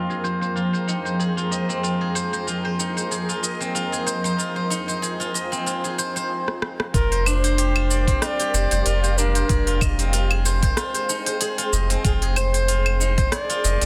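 A blurred, evolving granular pad holding an Abmaj9/F chord, silvery fingerpicked zither arpeggios through tape echo, and a very quiet glassy harmonics texture open this meditative organic downtempo excerpt at 94 BPM with a light 16th-note swing, while a crisp electronic kit of cabasa, claves, hats and rim clicks moves through a filter sweep and closes on a fill at 6.5 seconds. At 6.9 seconds the harmony shifts to Gm7/F as an airy, reedy cedar flute with crisp chiff and vibrato takes the melody through digital delay, a round sine sub bass pumps on F1, and a gritty, thumpy sampler kick anchors the groove. The mix is dense and heavily limited, with light reverb.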